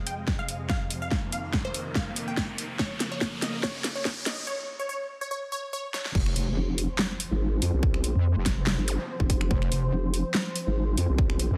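Swung sixteenths over a half-time groove drive this aggressive, chaotic stretch of heavy wobble dubstep, cut from a longer piece, with a punchy electronic kick and a layered drum kit of a huge snare, metallic hi-hats, handclaps, finger snaps and crash cymbal sitting up front in a touch of studio ambience. The opening build-up rests on a muted, con sordino string section holding dark, veiled chords through sidechain pumping and a low-pass filter, while a bright, detuned sawtooth unison pluck carries the melody through a dub echo. A drum fill and filter sweep run beneath a riser, and electronic sound effects of riser, impact and zap mark the build before a short break where the chords drop away. At 6.2 seconds the drop hits with an impact and a saturated square-wave wobble bass, joined at 6.6 seconds by a nasal, resonant vowel-sweep wobble bass shaped by a formant filter, both thickened with chorus and overdrive. 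The mix is dense and heavily limited, with light reverb.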